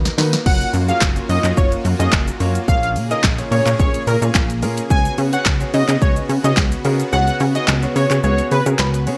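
A straight 4/4 dance-pop groove at 108 BPM opens with a drum fill from a punchy, up-front house kit of kick, snare, handclaps, hi-hat, shaker and crash, while a funky, plucky analog bass and a clear concert grand piano pump under sidechain beside a lush supersaw pad in the background. From 0.5 seconds a thick, bold unison lead carries the carefree, euphoric melody with vibrato and digital delay over F#maj7, A#m7 and C#7sus4 chords, and the kick drops out at 7.1 seconds. A round analog pluck with chorus and delay slips in at 8.8 seconds, all set in light reverb with a bright 1980s-style digital sheen.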